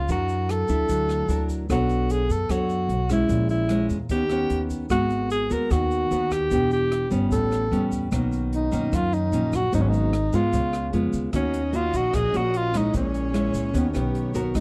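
A breathy alto saxophone with subtone, vibrato and scooped notes carries the melody up front in this smooth, melancholic bossa nova excerpt, over fingerpicked classical nylon-string guitar, a woody, growly pizzicato upright bass, an airy jazz kit of hi-hat, boomy kick and rim click, and a grainy egg shaker in the background, with a lush bowed string section entering softly behind at 11.3 seconds, all captured in a dry, close 1970s-style small-room sound.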